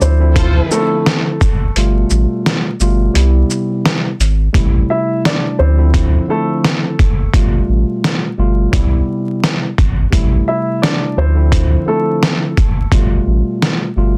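A gritty, pitched-down sampler-style drum kit with a thumpy kick and medium-tuned snare sits up front in this dark boom-bap hip-hop fragment at 86 BPM with a lightly swung feel, its kick dropping out from 1.8 to 4.5 s, while a deep, round sub bass anchors the Dm9–G9–Cmaj7–Am7 cycle, a mellow, clean tine electric piano carries the chords, a woody, polished upright piano takes the melody through plate reverb and digital delay, and a brief, distant, lush bowed string stab surfaces at 0.4 s, all wrapped in a dense, heavily limited master with vinyl crackle.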